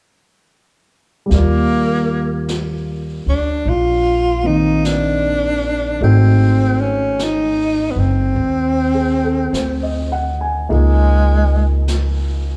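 At 1.3 seconds a tender, late-night jazz ballad excerpt opens with a breathy, close-miked tenor saxophone carrying the swung melody up front, with subtone, vibrato and scooped notes. Beneath it sit a grand piano's accompaniment touched by slapback echo, a woody, thumpy pizzicato upright bass, and a distant, roomy brush kit on snare and hi-hat. The saxophone stops at 11.9 seconds while the trio plays on to 12.6 seconds, all heard as a live club gig through the venue's PA with light reverb.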